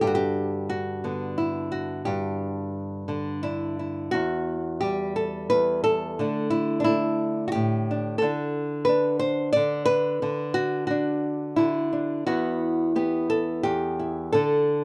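In a loose, rubato 3/4 around 88 BPM, this peaceful folk fragment from a longer piece features a solo fingerpicked nylon-string guitar, small-sounding and up front in light reverb, ranging from E2 to D5 as it moves from G6 to Emadd9 at 4.1 seconds, then D5, a stretch outside any chord at 8.2 seconds, and back to Emadd9.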